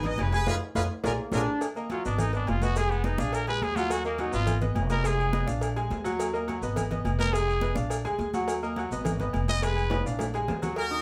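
A punchy horn section opens this passionate, danceable salsa passage over a bright, worn concert grand piano with deep bass, a woody, thumpy pizzicato upright bass on gut strings, grainy, mellow maracas, and a background of high-tuned congas with hard hands and a tight cowbell, with ringing metal-shelled timbales and agogo bells arriving just after. A bright trombone section adds a short second line at 1.2 seconds, while the band hits accents and the drums play a fill leading into the next section. From 1.9 seconds a growling trumpet takes the lead in a raspy, gritty pop-style solo with light vibrato, carried over a repeating minor progression that cycles back to its opening chords. A second drum fill closes out the solo, and the horn section returns briefly at 10.8 seconds before the cut. The sound is heard from further back in a wet studio room, with the bass, piano and brass up front, the congas, cowbell, timbales and agogo bells set behind them, and a faint mains hum underneath.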